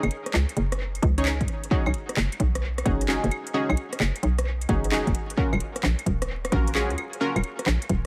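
UK garage in a two-step style at 131 BPM with a swung, bouncy and soulful feel, this short cut opens on a hollow, knocking FM bass and a house kit of claves, handclaps, metallic hats and rim clicks with overdrive and dub echo, joined at 1.0 seconds by an overdriven electronic kick and at 1.2 seconds by bright, detuned sawtooth chord stabs with chorus and dub echo moving from F#sus2 through B6 to D#m9, all set in an echo-heavy mix with light reverb and vinyl crackle.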